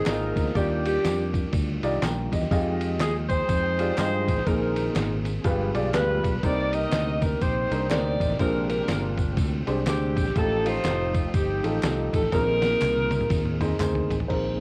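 A clear, up-front saxophone section carries the melody from the start of this hopeful, jubilant uptempo gospel excerpt at 122 BPM in a swung 4/4, its smooth top and light vibrato colored by cassette tape and analog delay. Beneath it sit a very quiet, flute-like tonewheel organ with key click and fast rotary, a round fingered electric bass, and a woody upright piano with long sustain. A muffled, pitched-down sampler-style drum kit with a thumpy kick and medium-tuned snare plays alongside small-room handclaps and tambourine with egg shaker, over jazzy chords such as Ebmaj9, Cm9 and F9, with a drum fill from 12.3 seconds, and at 14.3 seconds a dark baby grand piano sounds a single C5 just before the cut, all within light reverb on a home cassette recording.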